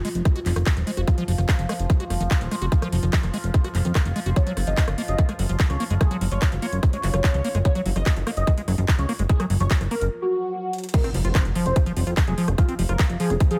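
Psychedelic trance at 146 BPM in a straight 4/4, this cut from a longer piece feels alien and driving, with a dry overall sound. A tight, tape-warm electronic kick sits up front beside a fat, saturated, detuned sawtooth bass, while a layered techno kit adds metallic hats, handclaps, rim clicks and crash cymbal. Running throughout is a squelchy, resonant square-wave acid riff with filter sweeps, chorus, digital delay and sidechain pumping, over a background drone of sustained chords whose moving overtones carry phaser, chorus, built-in reverb and the same pumping. At 4.4 seconds a thick, bold unison lead enters with a dark, detuned sawtooth-and-triangle tone, a sub octave, vibrato and a moving notch, treated with phaser and delay as the harmony shifts from Ebsus2 to Gb5. After a short break and a drum fill, the drop lands at 10.9 seconds on F5, marked by an electronic impact in the background.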